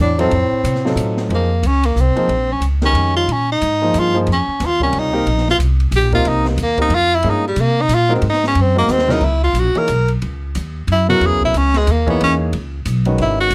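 This fragment of cool, searching modal jazz opens with a clear tenor saxophone, woody, thumpy upright bass and a brief, breathy bass clarinet in the background that drops out by 0.9 s, as a polished grand piano with long sustain and a small-room drum kit with dark cymbals, a high-tuned snare and a boomy kick settle in. Moving at a brisk 182 BPM in a swung 3/4, the up-front tenor takes a solo with light vibrato from 1.3 s over chords such as Bbm9 and Ab7 in Bb dorian. A short drum fill leads to a shift to C# dorian at 9.2 s, where the solo carries on over light reverb and close, detailed sound.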